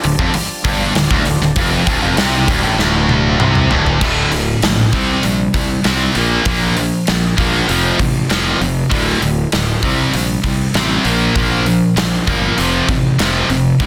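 Heavy and aggressive, this hard rock excerpt in D minor at 98 BPM opens with a gritty, very quiet overdriven tonewheel organ holding sustained chords through a slow rotary speaker until 4.0 s, while an up-front, scooped high-gain guitar and a biting overdriven guitar play the riff over a growly fuzz fingered electric bass and a gated 80s drum kit with a punchy kick and bright cymbals, whose fill at 2.8 s leads into a progression of D5, C5, Bb5 and F, captured with little reverb in a dense, heavily limited modern master.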